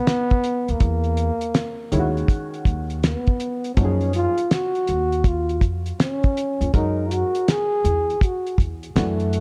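Jazz-hop in F# major at 81 BPM, this short excerpt from a longer piece sits in 4/4 with a swung sixteenth-note feel, its mood both warm and cool. A breathy trombone carries the melody from the very start, up front with dark, scooped notes and a smooth top in a soloing jazz style. The cloth-damped drum kit arrives almost at once, thuddy and dry with a fat snare, tight kick and rolled-off top, while a woody, thumpy pizzicato upright bass joins at 0.7 seconds. A worn, slightly detuned upright piano enters at 1.9 seconds, mellow and intimate, with audible action noise and short sustain as it moves through lush chords like Emaj9#11 and F#maj9 before landing on F#9. The dark, warm production places everything in a small room with light reverb, keeping the sound close.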